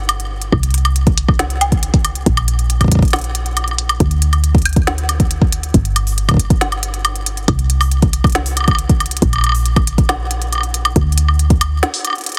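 A soft, round, dark FM bass with tube saturation opens this intricate, glitchy IDM fragment cut from a longer piece, quickly joined by an organic electronic kit of crisp hi-hats, a woody snare and woodblock trailing digital delay, and then by a deep, up-front electronic kick, all heavily compressed into a dry radio sound before a brief break at 11.8 seconds.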